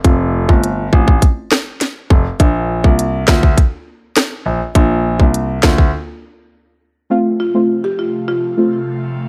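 A tight, up-front electronic drum kit with sharp snare, crisp hats and rim clicks drives this sunny, bouncy dancehall excerpt, joined by a deep, mellow chord stab with sidechain pumping and a warm concert grand piano carrying the bass with audible action noise; after the drums and piano stop at 5.9 s for a brief break, an airy, breathy pad enters at 7.1 s and a buzzing, woody marimba plays a short melody from 7.4 s, in a dry, close-sounding mix.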